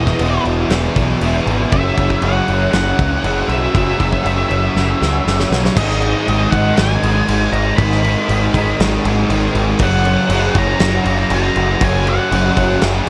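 A double-tracked fuzz guitar sits up front with a bright, compressed riff in the low register, thickened by ensemble chorus, while an octave-fuzz lead guitar carries a high melody through tape echo in this blissful, wistful shoegaze and dream pop excerpt at 119 BPM in straight 4/4. A growling picked electric bass, overdriven and direct, pushes beneath them, and a big acoustic rock kit with a fat snare, tight kick and rolled-off top plays crash, kick and snare in a big room, with a drum fill from 4.8 to 5.8 seconds leading into the second section. Light studio reverb surrounds the mix as the harmony moves from E5 and F#7(no3) to G#m and F#, and the clip is cut from a longer piece.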